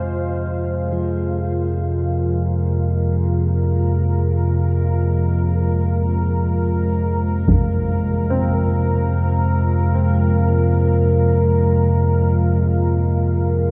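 In free time, this dark, desolate ambient drone in F minor, cut from a longer piece, rests on a deep, ominous rumbling drone with phaser that sits up front, while a moody, detuned sawtooth pad with chorus fades in across the whole 13.7 seconds. A very quiet, clear grand piano plays low arpeggios, and a metallic bronze singing bowl rings with slow beating, struck with a suede striker. A brief, band-limited hit from a vintage taiko ensemble lands at 7.5 seconds, all of it bathed in a cavernous cathedral reverb with a dim, rolled-off top end.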